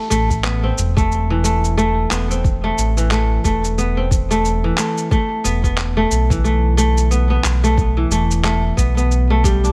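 A fingerpicked kora opens the excerpt at 0.0 s, its ringing, crisp arpeggios sitting up front in the low-middle register and trailed by delay. This is meditative organic downtempo at 90 BPM in 4/4, with a gentle 16th-note swing and an A minor centre that moves from Am to E5 at 5.1 s. Beneath it, a smooth synth bass blends sawtooth and triangle tones into a saturated, mellow low end, with fast attacks, sustained notes, vibrato, portamento glides and a moving notch. An overdriven, softly produced electronic kick enters at 0.3 s with a small-room ambience, while sampler-style cabasa and handclaps add a gritty, compressed, tape-warm shimmer in a similar room. Light reverb and a digital ambience frame the short, unhurried passage, which is cut from a longer piece.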